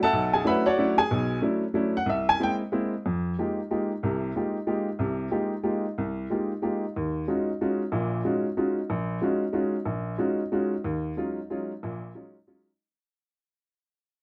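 Searching and hypnotic, this brief jazz excerpt finds a solo upright piano, woody, smooth and vintage in tone and placed up front, swinging a brisk waltz at 185 BPM through rich extended chords such as E13sus4, Fm11 and Ebm11 across a span from Bb1 to B5, framed by moderate studio reverb before fading out from 10.8 to 12.8 seconds.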